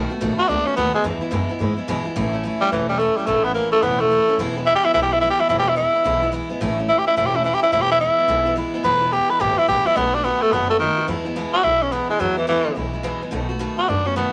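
Rockabilly with an upbeat, rollicking swing in four, this short clip from a longer piece moves from a B7 turnaround into a stretch that rocks between A and E before returning home. A growling tenor saxophone carries the solo melody up front, entering at 0.4 seconds with a raspy, gritty edge, a smooth top and a touch of vibrato in a pop-style delivery. Beneath it, a picked steel-string acoustic guitar plays a bright, full-bodied dreadnought accompaniment on fresh strings, with the odd finger squeak audible. An upright bass, plucked on gut strings, supplies a woody, thumpy low end that stops at 14.2 seconds, just before the close at 14.3 seconds. A moderate small-room reverb gives the trio a close, lively space.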